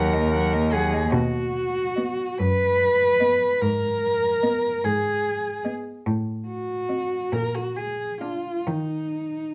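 A dark, woody cello with vibrato carries the second line up front in this elegiac, yearning classical piece for cello ensemble, cut from a longer work and moving in a rubato 6/8 at about 44-51 BPM in dotted quarters through Ebm, B, Abmadd9, Adim7 and Bb, while a clear, nasal melody cello floats in the background, a pure, distant accompaniment cello plays with a soft attack, and a warm, smooth-topped bass cello sits up front, each bowed sul tasto in a moderate large studio reverb, with the melody and accompaniment ending at 8.6 s before the bass and second line close at 9.5 s.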